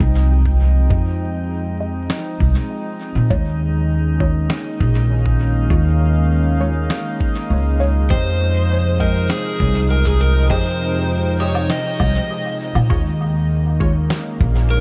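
A straight 4/4 pulse at 100 BPM comes from a muffled, thumpy kick and a woody, dark pizzicato upright bass up front, with a compressed snare and woodblock joining at 2.1 s through dub echo. This hazy, spacious ambient dub moves between Fm9 and Eb9sus4 over a smooth, detuned sawtooth pad with chorus, glassy sine harmonics drifting in reverb, and muted, mellow filtered chord stabs with phaser and dub echo sitting in the background, all under a layer of vinyl crackle. At 8.1 s a dark, overdriven slide guitar enters with a melody carrying dub echo, in this fragment cut from a longer piece in F minor.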